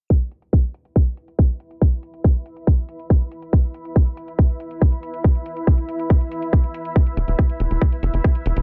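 Intense and driving, this short psychedelic trance fragment, cut from a longer piece, moves in a straight 4/4 metre. A tight, layered electronic kick sits up front from the first moment, with faint, warm-toned hi-hats tucked far behind it. From 2.2 seconds a granular cloud pad drifts in, blurred and detuned, bright yet hazy, carrying its own reverb and a sidechain pump. Near the end, at 7.2 seconds, a punchy sequencer bass arrives up front, its nasal sawtooth-and-square plucks given grit by tube saturation. The mix is dense and heavily limited, dry apart from the pad, with a low-pass filter sweep and a fade-in on the ambient pad shaping the whole passage.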